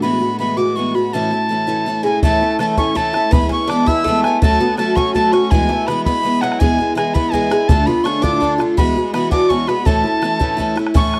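A rollicking, bright 6/8 Celtic folk jig at 110 BPM in A major, tuned to A4 = 436 Hz and cut from a longer piece, opens with a veiled, con sordino cello drone on A2 that sits in the background until 2.3 s, while a shimmering, octave-doubled twelve-string acoustic guitar picks the accompaniment up front and a pure metal tin whistle carries the tongued melody with audible chiff and vibrato; an Irish bouzouki joins at 2.0 s with a metallic double-string second line, and a boomy, open bodhran enters at 2.2 s, all captured in a dry, close 1970s-style small-room studio sound.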